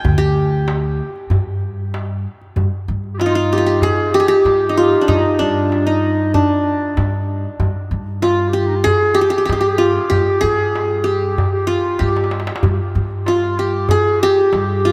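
A steady, straight 4/4 pulse at 95 BPM drives this hypnotic, longing Arabic maqam ensemble piece in G maqam hijaz, cut from a longer work, with a crisp, deep metal-shell darbuka played with soft hands and breaking into a fill at 12.0 seconds. Up front, a bright-edged, plectrum-plucked qanun carries the melody over a woody pizzicato upright bass on steel strings, while a clear, smooth-topped clarinet in classical style enters at 3.1 seconds as a background second line. The whole ensemble sits in a vast, echoing cathedral-like space with long, wet reverb.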